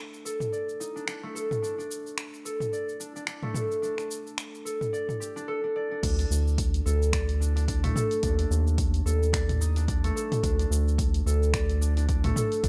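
This excerpt from an organic downtempo piece opens on a concert harp, fingerpicked and ringing, playing arpeggios up front through an analog delay. The mood is meditative, the tempo 109 BPM in 4/4 with a gentle swing on the sixteenths. A deep house drum kit of layered, produced electronic sounds joins almost at once, placing finger snaps, hi-hat, shaker, toms and a crash cymbal in a small room ambience. At 6.0 seconds a punchy electronic kick drum and a round analog bass arrive together, the bass sitting dark and deep with tube saturation and sidechain pumping. The harmony drifts through suspended and open chords around A and D, and the whole recording is dry and gritty with little reverb.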